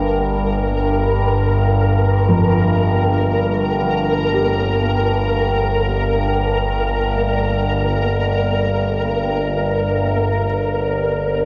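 A resonant drone of sawtooth and sine with moving overtones, chorus and phaser sits up front between G1 and G2 in this cavernous, ominous dark ambient piece in free time and G minor, alongside a flickering, grainy, detuned granular texture on Bb4, and from 2.3 s a dark, boxy baby grand piano joins, playing delayed arpeggios in the background with audible action noise, the whole cut from a longer piece and set in a huge, wet reverb lasting 7.8 s.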